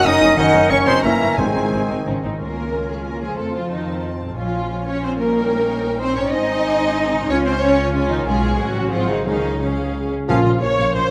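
In a driving, straight three-beat pulse, this urgent, stormy excerpt from a fast romantic orchestral movement sets a lush, focused violin melody over a second line of rich violins, with smooth violas accompanying and close cellos and distant double basses anchoring the bass, while a ringing harp spins arpeggios throughout. Airy flute, clear clarinet, a warm bassoon, mellow French horn chords and mellow trumpet stabs crowd into the opening 2.2 seconds, and the woodwinds and horns return briefly around 10.3 seconds. Timpani on calf heads strike at 1.4 seconds and again from 9.3 seconds, all in a moderate concert hall reverb.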